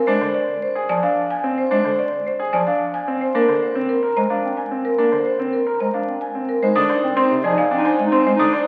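Hypnotic and meditative, this short cut from a longer classical piece in a minimalist, pattern-based style moves at 110 BPM in a straight 3/4, centred on F dorian. A marimba played with medium hard mallets carries the melody up front, its tone smooth and dark, while a bright concert grand piano spins polished, brilliant arpeggios with short sustain and deep bass. A worn celesta joins at 0.9 seconds with its own arpeggios, bell-like and delicate, sweet yet slightly out of tune. Beneath them a mellow bass clarinet supplies a distant, roomy accompaniment with a punchy edge. At 6.6 seconds, as the harmony turns from Fm and Bb to a rootless Fm7, a mellow, present clarinet adds a second line on a single Eb4. The whole sits in a wet scoring-stage reverb and carries the crackle of a very old 78 rpm record.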